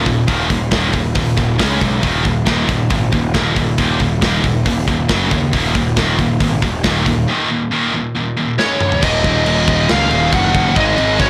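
A growly, fuzz-soaked bass sits up front in this dark, heavy metal excerpt, pushed along by a gritty, tight metal drum kit with a tight kick and medium-tuned snare, while two scooped, high-gain rhythm guitars grind out the riff in the background. At 8.6 seconds a drum fill ushers in a bright, distorted lead guitar melody, and from 9.0 seconds the groove drops into half time. The whole thing is wrapped in small-room ambience and a blown-out, overdriven recording sound.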